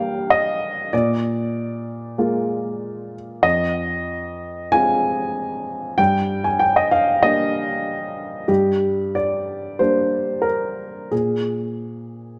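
Neoclassical minimalist piano in a wistful, melancholic mood, taken from a longer piece and lasting about 12.4 seconds. A solo upright piano plays at 94 BPM in 4/4, the beats uneven and pulled by rubato so the pulse breathes freely. The instrument sounds woody, intimate and natural, placed up front with audible action noise that brings the listener close to the keys, and it spans from F2 to Ab5. The harmony moves from Gm through Bb7 and Fm7, returns to Gm at 6.0 seconds, and settles on a Bb7 voicing that omits the third at 11.1 seconds. A moderate concert hall reverb with a 2.0-second decay surrounds the piano, adding a sense of space around its close, warm tone.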